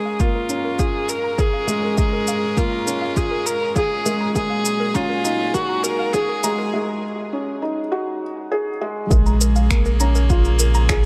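Lightly reverberant and filtered, this melancholic, cinematic slice of piano and strings electronica opens with an earthy bowed viola melody through tape echo and a low-pass filter. Beneath it sit sidechain-pumped chords from an intimate string quartet, a soft, felt-muted upright piano riff, and a lo-fi, warbling pluck playing chorused arpeggios in the background. A deep, up-front electronic kick and a tape-warm small-room kit of finger snaps, shaker and toms drive a build-up under a filter sweep; the viola stops at 6.7 s as a break begins, and at 9.1 s the drop lands with a round, detuned analog bass.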